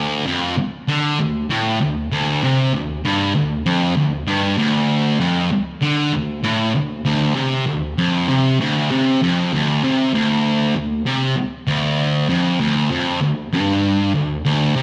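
A thick, bright fuzz guitar opens alone, played up front and double-tracked, its picked, distorted low notes trailed by slapback echo in a smoky, heavy rock passage in D minor at 97 BPM. The solo guitar fills the full 14.8 seconds, moving into a new section at 9.5 seconds, all set in a moderate echo-chamber reverb that gives the short cut from a longer piece a heavy weight.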